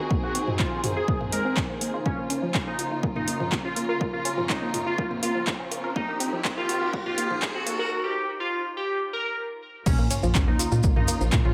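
A straight 4/4 pulse at 123 BPM drives this cinematic, hypnotic melodic techno build-up in Bb minor, where a punchy, tape-toned electronic kick and an overdriven deep house kit of crash, handclaps, metallic hats and toms sit under an up-front, warbling detuned polysynth melody, dark bowed string chords with vibrato, woody wave-folded pluck arpeggios under a filter sweep and a background ethereal pad that drops out at 7.9 s, while a riser and sub drop enters at 3.9 s and, after a brief break, the drop at 9.9 s brings in a tight sawtooth sequencer bass and grainy, close maracas, the whole mix soaked in dreamy plate reverb.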